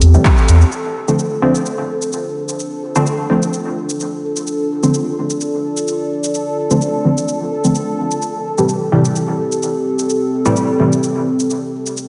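A swung 128 BPM pulse in 4/4 drives this nocturnal, cavernous dub techno passage in D minor, cut from a longer piece, with an overdriven, layered deep house kit of handclaps, hi-hat and shaker sitting low beneath everything. A clean sine sub bass sounds only until 0.6 s, while a dark, detuned analog pad with chorus and phaser sustains chords from Am7 into Dm7 and back to Am7 at 8.2 s. Muted, detuned sawtooth dub stabs with filter pluck and dub echo sit up front, a resonant, bubbling stepped-filter texture drifts through the mix, and a lush hall reverb soaks the mix in a dreamy, dim haze.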